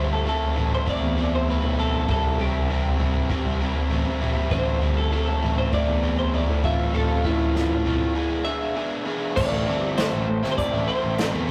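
A straight, steady groove comes from an acoustic drum kit played with bundle sticks, entering at 0.4 seconds with a tight kick, a medium-tuned snare, hi-hat, toms and crash in a small-room sound. This short, moody, cool indie rock cut opens with a biting, double-tracked overdriven guitar riff placed up front, while a punchy fuzz bass, heard both direct and through an amp, holds down the low end. Above them, a bright, twangy twelve-string electric guitar picks a clean, compressed melody. The harmony moves from Am through C, Am7 and Fmaj7/A to an E7 break at 8.2 seconds. At 9.4 seconds a very quiet, vintage string machine in a viola register adds sustained, warbling sawtooth chords with soft attacks and an ensemble chorus over Am7. The rough rehearsal-room recording carries light reverb, tube saturation and a faint mains hum.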